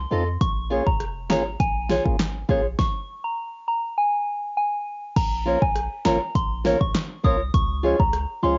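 A straight 4/4 dancehall groove comes from an electronic, layered deep house drum kit that enters at 0.4 seconds, its deep kick, fat snare, handclaps, rim click, hi-hat and crash cymbal sitting up front with a tape-warm character, as if re-recorded in a small room. A stop breaks the beat from 2.8 to 5.2 seconds, where a new section begins. Beneath it, a boomy 808-style bass with a sine body and a noise layer has a fast attack and a mellow decay, while a clean tonewheel organ with a stopped rotary speaker carries sidechain pumping. Up front, a dark, fingerpicked nylon-string guitar plays small-sounding arpeggios, and a soft FM synth bell takes the high melody, its pure tone colored by chorus and phaser. The mood is tough and sultry, and the dry, dull-topped sound of a home cassette recording gives this cut from a longer piece an intimate, lo-fi grit.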